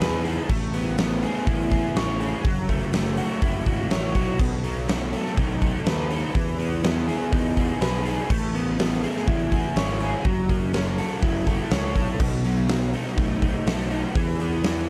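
A crunchy, overdriven electric guitar, double-tracked and up front with analog chorus, plays a picked riff through this short cut from a longer shoegaze and dream pop rock piece. The mood is wistful and blissful, moving at 123 BPM in a straight 4/4 in B mixolydian, tuned to A4 = 442 Hz. A huge acoustic arena drum kit also sits forward, with bright cymbals, a fat snare, a punchy kick and a hall sound across crash, hi-hat, kick and snare. Beneath them, a picked electric bass, dark and round with fuzz and overdrive, holds the low end. The chords cycle through Amaj9, F#m7, B7 and Emaj7 as the opening section repeats, landing on E5 at 14.2 seconds. The production is dark and warm, set in small room ambience.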